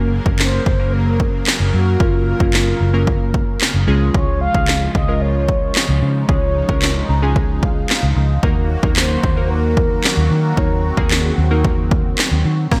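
A straight, driving 4/4 groove from a house drum kit arrives at 0.3 seconds, with a punchy kick, cracking snare and handclaps that are overdriven, wrapped in gated reverb and placed up front. This confident dance-pop excerpt, cut from a longer piece, sits in a bright 1980s-style digital production with light reverb and digital ambience. Beneath it, a dark, round, foam-muted fingered electric bass pumps against the kick, as do the glassy digital keys and a lush, thick unison pad of detuned sawtooth and square waves. The keys add a fill around 6.8 seconds over a progression moving from Gb to Db to Ebm. Above it all, a mellow, horn-like synth lead carries the melody with soft attack, vibrato, chorus and digital delay. At 12.7 seconds, a woody, percussive FM pluck with phaser briefly sounds a single note of its arpeggio part.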